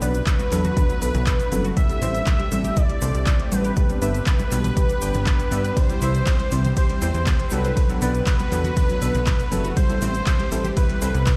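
Expansive and emotional, this progressive house excerpt moves at 120 BPM in a straight 4/4, centred on A dorian as the chords cycle from Bm7 through Am7, G and C before returning to Bm7 and Am7. A thick, bold unison lead carries the melody with vibrato and digital delay, shadowed in the background by a clear, distant studio violin section bowing a second line that pumps against the kick. Underneath, a lush unison pluck with a cassette-tape colour runs arpeggios, while a deep, mellow chord stab with chorus and a moving notch adds dark accents, and a shimmering, ethereal pad holds very quiet sustained chords. A plucky analog bass, funky and up front, drives the low end with sidechain pumping alongside a punchy electronic kick that enters at 0.3 seconds. A deep house kit of handclaps, smooth hi-hat and ride cymbal, a grainy egg shaker and hard-handed congas from 0.4 seconds fill out the groove, all set in a stone-room reverb that sounds like a big sound system playing in a bare room.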